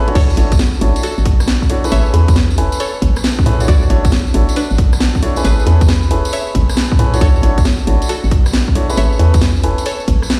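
A hollow, knocking FM bass bounces under an overdriven, punchy electronic kick and a house kit with a cracking snare, rim clicks, hi-hats and crash in this sunny, bouncy two-step UK garage cut at 136 BPM in D lydian, while dark, mellow baby grand piano stabs and a twangy, string-like resonator pluck melody carrying chorus and dub echo sit over Dmaj9 and Amaj9 chords, a jingly tambourine adds shimmer, and the whole mix is framed by stone-room reverb and vinyl crackle, as if played on a big sound system in a bare room.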